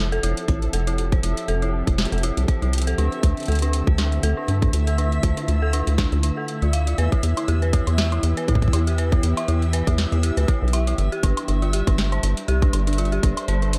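A dry, close mix puts a tight electronic kick and a rubbery, resonant acid bass up front in this wistful, intricate IDM excerpt, moving at 120 BPM in 4/4 with a light swing on the sixteenths. Silky, warbling string-machine chords with ensemble chorus and 12-bit grit drift through Fmaj7, Dm7, Em and Gsus4. An eerie, inharmonic FM bell traces arpeggios through a low-pass filter and dub echo, while a booming analog drum machine adds crisp snare, metallic hats and woodblock from a large room. A reversed, dreamy granular texture sits in the background with sidechain pumping.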